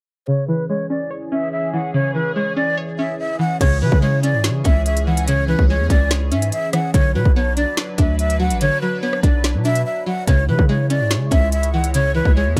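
A breathy, close-miked silver concert flute carries an unsteady, tongued melody over a twangy resonator pluck and an evolving, detuned pad through a filter-swept intro, until at 3.6 seconds a drill drum kit with a hard-clipped kick, woody snare and crisp hats and a punchy, heavy 808-style bass drop in, driving an ominous, menacing half-time drill groove at 144 BPM in C# phrygian, with a brief break at 9.9 seconds, in a dark, dry production cut from a longer piece.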